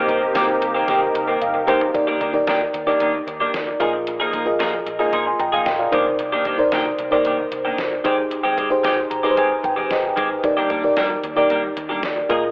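A straight 4/4 drum machine with a thumpy kick and fat snare drives this moody, urgent 1980s-style pop excerpt at 113 BPM, where a lush FM electric piano and a bright, twangy twelve-string electric guitar riff sit up front over a round, foam-muted bass in the background, while a warbling analog pad and detuned synth brass stabs colour only the opening 1.9 seconds before the chords move through Ebmaj7, Bb7sus4, Cm9 and Abmaj7, with drum and electric piano fills and a cassette-tape, telephone-like haze over a shimmering, reverberant room.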